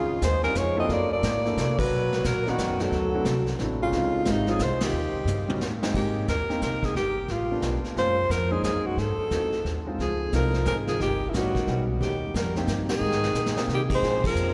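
Swinging in a brisk 3/4 at 178 BPM, this small-group swing and bop passage, cut from a longer piece, has a sophisticated, warm mood, with a breathy, close-miked alto saxophone carrying the melody up front in a whispered subtone with vibrato and scooped notes. A soft, intimate trombone adds a background second line, pausing between 5.6 and 10.0 seconds. Underneath, a woody, thumpy pizzicato upright bass, a concert grand piano with audible action noise, and a distant, rolled-off brush kit that plays fills at 5.3 and 13.0 seconds all sit in a long cathedral reverb over rich jazz harmony.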